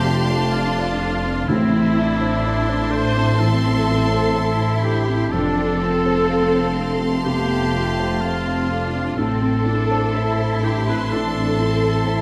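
Bittersweet and full of longing, this cinematic film-score passage unfolds at a slow 62 BPM in A minor, its rubato phrasing moving between F and A minor chords. A rich violin section carries the melody high up at C6 with focused, close vibrato. A clear, even second violin section, a pure flute section with rolled-off highs and a warm solo oboe weave supporting lines around it. Underneath, a felt-muted upright piano with a dark, vintage tone and an expressive viola section, whose players slide between notes with portamento, fill out the accompaniment. Mellow French horns sustain chords, and a concert harp rings out thumb-plucked arpeggios in the background. A distant cello section and an up-front double bass section anchor the low end, while timpani struck with hard mallets sound an articulate A between 1.5 and 2.9 seconds, all set in the generous bloom of a scoring-stage reverb.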